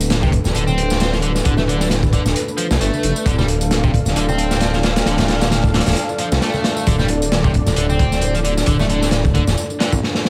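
A crunchy, gritty breakbeat kit with a tight kick sits up front in this energetic, playful breaks excerpt, alongside a swirling, thick detuned saw bass run through phaser and tube saturation, a moody analog pad shaped by chorus and sidechain pumping, and a tambourine tucked into the background. At 0.2 s a bright, overdriven, double-tracked electric guitar riff with dub echo joins, along with very quiet small-room congas and bongos played with soft hands. The dry, swung mix carries vinyl crackle, and a drum fill lands at 10.0 s.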